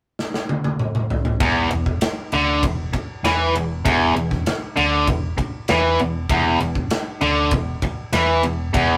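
A straight 4/4 pulse at 98 BPM drives this smoky, heavy cut of blues rock and southern rock, played by a power trio and taken from a longer piece. A big acoustic rock drum kit opens with a fill from 0.2 to 1.4 seconds, sounding kick, snare, toms and ride cymbal, with a punchy kick and a medium-tuned snare set up front. At 1.4 seconds the overdriven electric guitar and the bass arrive together, the picked, double-tracked guitar riff sitting bright and forward between E2 and E3. Beneath it, a hollow-body short-scale electric bass, played with the fingers and amped, adds a dark, round low end from E1 to E2, lying lower in the balance than the guitar. The whole take carries the rough character of a rehearsal-room recording, with tube saturation and moderate small-room reverb giving the trio a close, gritty presence.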